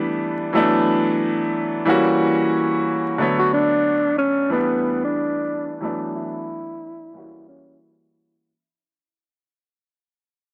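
The sound is dry and gritty, with vinyl crackle and light reverb giving this moody, dark hip hop excerpt a worn, close feel. At 91 BPM in 4/4 with a swung sixteenth-note feel in B minor, a bright grand piano carries the accompaniment through chords such as A7sus4, D69, F#7b9 and Bm9. The piano is brilliant and intimate, sitting up front with long sustain, audible action noise and a cassette-tape colour. A breathy tenor saxophone takes the solo melody from 3.4 to 7.8 seconds, dark and smooth on top, with vibrato and subtone in a jazz style. From 3.2 seconds a filter sweep and a fade-out carry the music to its close at 8.5 seconds.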